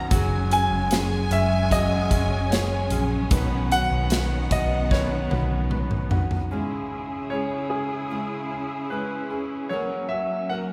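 A tender, heartfelt pop ballad excerpt at 75 BPM in a straight 4/4 opens with a clear, intimate grand piano accompaniment, a nylon-string guitar fingerpicking bright arpeggios in the background, and lush sustained chords from a warm string section, while a dark violin section with expressive vibrato and portamento sings a second line until 6.1 seconds. A bright, brilliant concert grand piano carries the melody from 0.5 seconds, its short sustain set against the accompanying piano's long ring and audible action noise. A vintage, foam-muted electric bass sits round and up front beneath an acoustic studio drum kit with a punchy kick and medium-tuned snare, and both play until 6.5 seconds after a drum fill that begins at 4.9 seconds. The harmony moves from F#sus2 to Badd9, then settles on C#m and F# in the closing bars, where both pianos, the guitar and the strings carry on. A wet concert-hall reverb with a long decay surrounds the whole ensemble.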